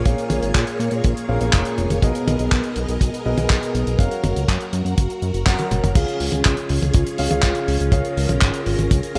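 A fat, thick analog bass anchors this danceable, melodramatic italo disco excerpt at 122 BPM in straight 4/4. Its detuned sawtooth and square tones carry ring modulation and a filter sweep, with a fast attack and a mellow sustain. A lush vintage string machine holds sustained chords through phaser and ensemble chorus, its soft attack and long release filling in behind. A concert grand piano with audible action noise and a boxy, intimate character plays stabs treated with tape echo. A damped 70s kit with a rolled-off top adds hi-hat, handclaps, toms and crash under gated reverb, while a tight, dry, mid-forward kick drives the beat. The chords move from A#m7 through G#madd9/B and F#maj7, and a band accent at 5.5 seconds and a drum fill lead into a new section on C# at 6.0 seconds, all set in a small room with light reverb.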